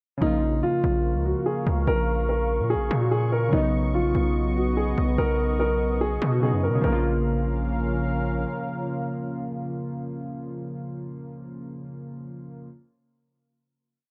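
A boxy, mellow piano loop, warbling detuned lo-fi synth keys and a saturated, distorted 808-style bass with long, sliding sub notes open this cold, menacing half-time hip hop piece; a deep, moody analog pad joins at 0.8 seconds and holds on after the piano stops at 8.0 seconds and the bass at 8.5 seconds, fading at 10.6 seconds and leaving the synth keys alone until 12.7 seconds in a dry, close sound.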